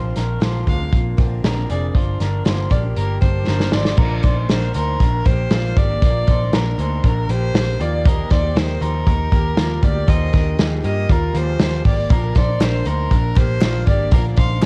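This home cassette recording has little reverb, and it captures a wistful, restless stretch of jangly indie pop in straight 4/4, cut from a longer piece. A shimmering, octave-doubled twelve-string acoustic guitar picks the accompaniment in the background. Beside it, an electric guitar through a small old amp plays twangy, slightly broken-up arpeggios, and both guitars carry a cassette-tape tint. Up front sit a round, foam-muted vintage electric bass and a loose acoustic drum kit with dark cymbals, a tight kick and a rolled-off top, and a drum fill ending at 4.0 seconds carries the chords from Bbadd9 and Gm7 into Ebadd9. A clear, smooth violin enters at 0.7 seconds with an even melody full of vibrato, also touched by tape, while crisp, compressed group handclaps join in the background at 12.6 seconds.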